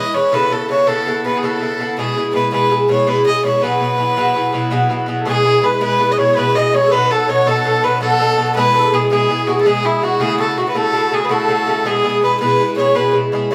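A fiddle carries the melody up front from the first moment, its single bowed voice nasal and earthy with an airy bow and a touch of tape echo. This is cheerful, lively Celtic folk in 9/8 at 109 BPM, set in E major with a straight feel. An Irish bouzouki sits alongside it, picked on double strings with a metallic, acoustic ring that fills out the accompaniment through chords like Aadd9, E, B7 and F#m7. At 5.2 seconds a musette accordion slips in behind them with a second line, reedy and shimmering from its wet tuning yet dark and smooth in the background. The band plays live together in one room with moderate studio reverb, and this cut from a longer piece repeats its opening section.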